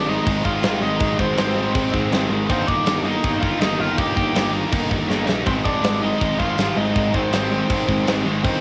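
Punk rock at 161 BPM in a straight 4/4, angry and aggressive, this short cut from a longer piece pairs a smooth, bright overdriven lead guitar melody, carrying cassette-tape colour up front, with three picked riff guitars: a biting overdriven one and a high-gain, double-tracked distorted one in the background, plus a very quiet sludgy one. A growly fuzz-driven electric bass sits beneath them, while a big, roomy acoustic kit with a tight kick, medium-tuned snare and crash cymbal enters at 0.3 s and plays a fill at 5.1 s. The chords move from Ab to Eb/G and back to Ab, heard through light reverb with the character of a home cassette recording.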